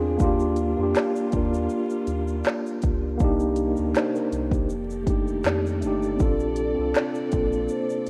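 A lazy 80 BPM groove with lightly swung sixteenths drives this dreamy, cosy lo-fi hip hop clip: an up-front organic electronic drum kit of deep kick, woody snare, crisp hats, handclaps and shaker enters at 0.2 s, with barely audible finger snaps beneath. A mellow tine electric piano with cassette-tape coloring carries the chords over a round, dark analog bass, while a lush, close bowed string section sits quietly underneath through Ebmaj9, Cm7, F13 and Bbmaj9. A soft-mallet vibraphone with tape echo and slow motor vibrato slips in at 6.4 s in the background, and the whole rough home-demo mix is bathed in moderate plate reverb and vinyl crackle.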